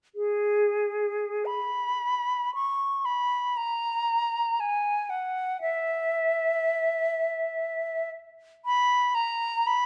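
A silver concert flute plays alone with an airy, vibrato-laden tone in this brief, yearning and mournful classical excerpt, its free rubato phrasing carried by the lingering reverb of a recital hall.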